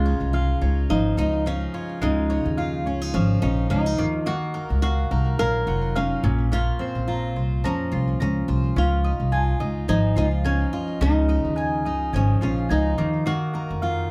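A fingerpicked flamenco guitar with fresh strings and a touch of digital delay carries the melody up front in this carefree, heartfelt pop excerpt at 107 BPM in Db major, over a full-bodied jumbo steel-string acoustic guitar with audible finger squeak, round double-strung mandolin arpeggios and a woody, prominent pizzicato upright bass, the band playing live together in a small room with a light sixteenth-note swing as the chords move through Dbadd9, Ebmadd9 and Bbmadd9.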